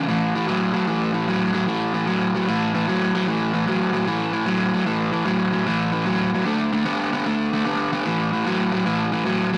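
A rough rehearsal-room recording with saturated grain sits inside a wet stone room, whose reverb lingers for about 1.2 seconds. This short blues fragment, cut from a longer piece, is gritty and soulful, with a swung eighth-note feel in 4/4. A lone overdriven semi-hollow electric guitar carries everything, picked and placed up front, its hollow-body tone thickened by analog delay. The guitar stays in a low register, moving from A5 to D5 at 6.5 seconds and back to A5 at 8.1 seconds. The result feels raw and gritty, like a player working through a phrase in a live space.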